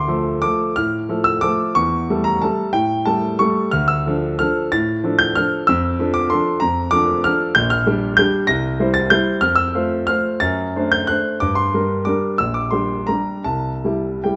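Close, detailed microphones place a grand piano up front in a moderate recital hall, its 1.5-second reverb adding gentle air around a warm, smooth, vintage tone. This is a classical piano waltz in D minor and 3/4, played solo with a rubato feel that lets the tempo range between 148 and 203 BPM. The mood is playful and elegant, and the piano ranges from Bb1 up to Bb6 across this 14.4-second cut from a longer piece. The harmony opens on D minor, moves through A7 over E and back, then turns toward F by 9.4 seconds. From there it passes through D7 and G minor before arriving on C at 13.5 seconds.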